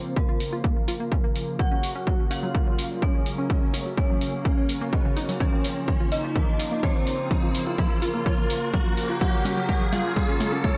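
Echo-heavy and lightly reverberant, this dark, dramatic melodic techno excerpt moves at 126 BPM in Bb minor, with the whole passage working as a build-up over alternating Bb minor and Gb chords. An overdriven, layered electronic kick drum sits up front, joined by an overdriven techno kit of hi-hat and toms that pump with the sidechain and break into a drum fill from 5.4 seconds. A thick, bold unison lead carries the melody with vibrato, ensemble chorus and dub echo, while a brassy, nasal analog pad punches out stabs through chorus, 12-bit sampler grit and analog delay, both parts shaped by filter sweeps. In the background, a round analog pluck runs arpeggios with chorus and delay, and an eerie, inharmonic FM bell traces a second line higher up, softened by phaser and a low-pass filter. Beneath them a very quiet, morphing wavetable pad holds warbling sustained chords, as an electronic riser climbs from 0.5 seconds to heighten the tension.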